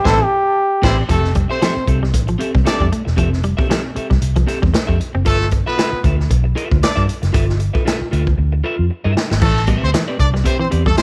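Studio reverb gives space to this sly, cool swung funk excerpt, where a bright, present trombone with tape echo takes a short solo over a band accent until 1.0 s, a clear, punchy horn section carries a second line, and a twangy guitar at the edge of break-up adds lush-chorused accompaniment; up front, a dark, round, foam-muted fingered bass sits with a distant big-band drum kit whose boomy kick and rolled-off top lead into a fill at 8.4 s, while a clean, hollow-body semi-hollow guitar plays a background riff from 1.1 s.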